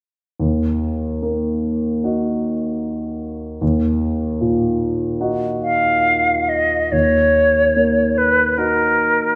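A pure-toned silver flute with expressive vibrato and a soft attack enters at 5.6 seconds to carry the melody over a warm grand piano's deep-bassed accompaniment, which opens this solemn, melancholic romantic classical excerpt alone at 0.4 seconds, with rubato phrasing that breathes freely in a reverberant concert hall.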